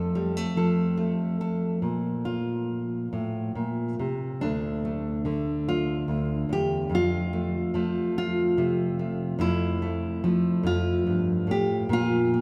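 A fingerpicked nylon-string guitar plays alone and up front in this haunting, wistful folk fragment at a rubato 48 BPM in 6/8, its full-bodied, deep classical tone and fresh strings ringing through a church or concert hall with a long cathedral reverb as the chords move from F to Bb5, then shift at 4.4 seconds to a second passage through Dm and F before returning to Bb5 at 11.9 seconds, all tuned to A4 = 445 Hz.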